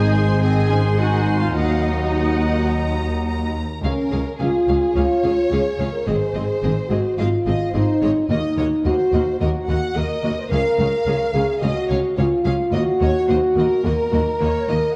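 A straight 4/4 pulse at 108 BPM drives this swashbuckling, determined heroic adventure film-score fragment in Eb dorian, where lush bowed violins carry the melody over a second violin line with an expressive soft attack, rich violas and cellos, clear double basses and dark, up-front French horns holding sustained chords, while bright flutes, a vintage-toned oboe, a background solo clarinet and very quiet trombones sound only until 3.5 s, inside a wet recital-hall reverb.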